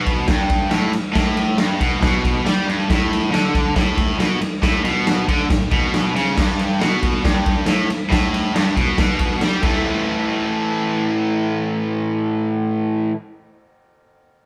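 This garage rock excerpt has a raw, rowdy energy. It moves at 138 BPM in a straight 4/4 and is tuned a touch flat, at A4 = 437 Hz. An electric guitar through a cranked stack drives a picked, overdriven riff from G2 to A3. Its bright, double-tracked tone sits up front, moving from Gadd9 through a chordless stretch back to Gadd9 and onto A5. A raw acoustic drum kit of kick, snare, ride and crash comes in at 0.1 seconds. It has a punchy kick, a medium-tuned snare and a dark, gritty, saturated character with a rolled-off top. The drums stop at 9.7 seconds, leaving the guitar to carry the closing section until 13.2 seconds. The whole band sounds as though it is playing live in one room, with a moderate stone-room reverb lending a rough, roomy edge.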